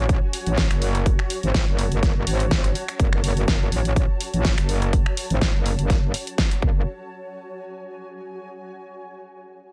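Bass house with a bouncy, aggressive mood, cut from a longer piece and set in 4/4 with a light swing on the sixteenths. A metallic wobble bass sits up front: an FM tone with a sine element, fast attack and sustained notes, saturated and compressed with chorus and sidechain pumping. A punchy, layered electronic kick drives the groove beside a big-room dance kit of finger snaps, hi-hat and a huge snare. Above them, a granular cloud pad drifts in a blurred, detuned haze, its slow attack, long release and built-in reverb giving a mellow, full-bodied backdrop that also pumps with the kick. The bass and drums drop out by 6.8 seconds, leaving the evolving pad alone until the fragment ends at 8.8 seconds, all framed by a digital ambience.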